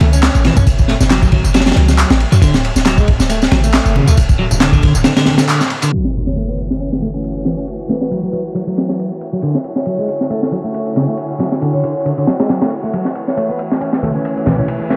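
A raw, swaggering breakbeat fragment opens with a crunchy, tight-kicked drum kit, a slightly broken-up electric guitar riff soaked in dub echo, a deep, boomy 808-style bass that stops at 5.0 seconds, distant congas and overdriven electronic tambourine and handclaps, before an up-front impact at 5.9 seconds ushers in dark, sul tasto chamber strings pumping under a filter sweep and a ringing vibraphone melody with vintage 12-bit sampler grit, the mix steeped in echo and vinyl crackle.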